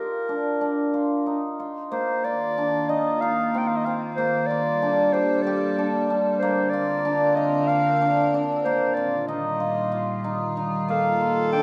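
A concert hall's moderate reverb surrounds this contemporary chamber music, cut from a longer piece, with a shimmering, restless mood in an uneven 7/8 meter and a straight feel. From the start, a bright, ringing cimbalom sits up front with hammered arpeggios beneath a mellow, classical-style solo clarinet carrying the melody. At 2.3 seconds an evolving wavetable pad enters lower in the mix with sustained chords, its morphing triangle tone shaped by a slow attack, long release, chorus, phaser and its own built-in reverb. The harmony drifts through suspended and add-nine colours, moving from Fsus2 through Gmadd9 and Bbadd9 before returning to F7sus4. At 10.9 seconds a single distant viola appears, its bowed, reedy gut-string tone in period style adding a brief second line on the note A4.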